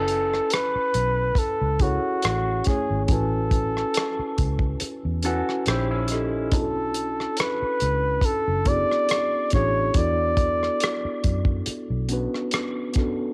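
A close-miked flugelhorn carries the melody up front, its tone warm with vibrato in a jazz-style solo that runs from the start until about 11.7 seconds. This short excerpt of late-night, sultry R&B and neo-soul moves at 70 BPM in 4/4 with a light swing on the sixteenths, sitting in F# minor over chords that pass from F#m7 through Amaj9, A#dim7 and Bm9 to E9sus4. A mellow, clean tine electric piano fills in the harmony with a cassette-tape softness, while a dark, round, foam-muted fingered bass adds tube-saturated weight underneath. The soul drum kit sits up front with a tight kick, hi-hat and rim click, its sound mid-forward and rolled off on top in a small room. Briefly, from 5.2 to 6.5 seconds, a twangy, slightly broken-up guitar through a small old amp slips in a compressed, lo-fi second line. Light reverb and the home cassette recording give the whole a hazy, intimate feel.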